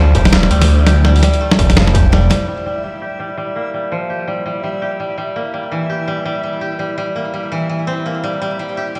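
A koto and a thick, swirling detuned saw bass open this short, dark and spacious half-time drum and bass excerpt together at 167 BPM in G dorian, the koto's woody, fingerpicked arpeggios sitting up front through a low-pass filter and digital delay. Beneath it, the bass, with its phaser, drives the opening drop alongside a gritty, pitched-down sampler-style kit of hi-hat and snare and a distorted electronic kick. The groove swings on the sixteenths, and the kick drops out at 2.1 seconds on a band accent before the low end and drums fall away by 2.5 seconds. From there the koto carries on over a reversed, dreamy, granular texture that hovers brightly in the background, moving through Gm, C and a rootless Fmaj7sus2 until 9.0 seconds. A large studio reverb and the sense of a big sound system in a bare room give the whole piece a cavernous air.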